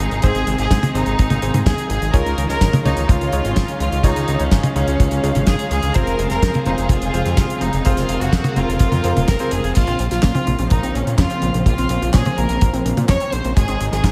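Nostalgic and danceable, this italo disco passage, cut from a longer piece, rides a straight 4/4 feel with a dry, tight acoustic kick sitting forward in the mix. A clear chamber violin section carries the melody with light vibrato and a biting, earthy edge, trailed by digital delay and shimmer reverb, while a lush studio string section holds sustained chords in the background. A bright, cutting electric grand piano adds vintage stabs with a clangy low end until 9.7 seconds. Underneath, a fat, detuned sawtooth analog bass evolves through filter sweeps, and a damped 70s drum kit brings a fat snare, handclaps, hi-hat, toms and crash cymbal under gated reverb. At 9.8 seconds a punchy, wave-folded unison pluck enters in the background with arpeggios through tape echo, as the harmony moves from Ab through Dbadd9 and Fm to Bbmadd9 in a small, lightly reverberant room.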